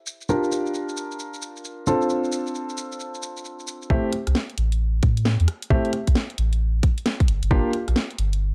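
Soulful and late-night, this two-step UK garage passage at 133 BPM swings its sixteenths in A phrygian, moving through Gm7, Dm7 and Am7. A dark, mellow grand piano plays intimate stabs through a low-pass filter sweep and tape echo, its worn action noise audible, while a layered garage kit of hi-hat, rim click, shaker and cracking snare sits in a small room. At 3.9 seconds a tight electronic kick and a deep, round sub bass with sidechain pumping arrive to drive a build-up, all within a dark, warm production with light reverb, cut from a longer piece.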